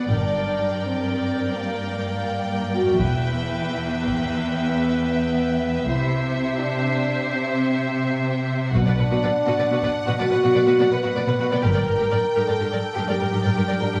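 A wet scoring-stage reverb surrounds this epic, relentless film-score passage in 12/8 at 83 BPM, cut from a longer piece. Focused, vibrato-rich violins carry the melody over a smooth second violin line and intense violas, while mellow, roomy French horns hold sustained chords. Up-front cellos and clear double basses anchor the low end through Gm, Em, C, Bm and back to Gm, with heavy-stick taiko entering in the background at 3.0 and 8.7 seconds and the basses dropping out at 11.8 seconds.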